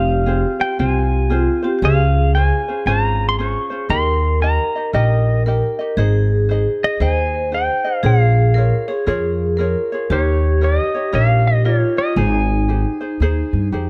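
Dark, softly reverberant production frames this languid, dreamy Hawaiian passage in Ab major at 116 BPM with a lilting swing, where an up-front clean electric pedal steel guitar carries the melody with fingerpicked slides and volume swells, a metallic, ringing vibraphone with medium hard mallets and motor vibrato adds a second line, a light fingerpicked acoustic ukulele accompanies, and a woody pizzicato upright bass sits prominently beneath a progression moving from Fm through Bbm7 and Eb7 to a closing Abmaj7.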